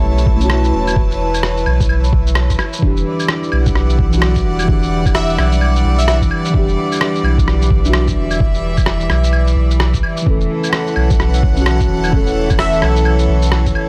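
A reversed, dreamy swell opens this ghostly, nocturnal future garage excerpt, floating very quietly over muted felt-like synth keys, a rich chamber string section and a round sine sub bass on an A7/E chord. The reversed texture ends at 2.8 seconds as the harmony settles onto Em7, while a pitched-down, muffled electronic kick, present from the opening moments, thumps beneath compressed shaker, rim click and claves, all carrying a tape-softened, sampler-style character at 129 BPM with a 61% 16th-note swing in E dorian. The dark, intimate keys carry chorus, tape echo and 12-bit sampler grit, and they pump against the kick along with the bowed, lightly vibratoed strings and the deep, up-front bass. At 5.1 seconds a punchy, detuned sawtooth unison lead slips in briefly on a single high note through analog delay, returning for a moment near the end, after the chords have moved to F#m7/E. The whole excerpt sits in a gritty, dry hardware recording with digital ambience and a bed of vinyl crackle.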